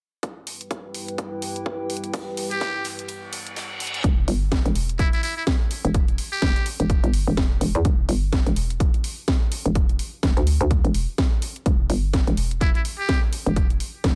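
A buzzy, raspy trumpet with a metal mute carries the solo melody from 2.5 seconds, its scooped, growling notes trailed by digital delay, in this aggressive, swaggering bass house excerpt with a swung feel. Underneath, a punchy, overdriven electronic kick and a house kit with a cracking snare are re-recorded in a large room, while a deep, moody sawtooth pad with phaser and a warbling, nostalgic lo-fi pad pump with the sidechain, joined briefly by a distant, hall-like arena kit. After a break where a reverse cymbal rises from 3.3 seconds, a hollow, bouncy FM bass with tube saturation lands up front at 4.0 seconds and drives the rest of the track.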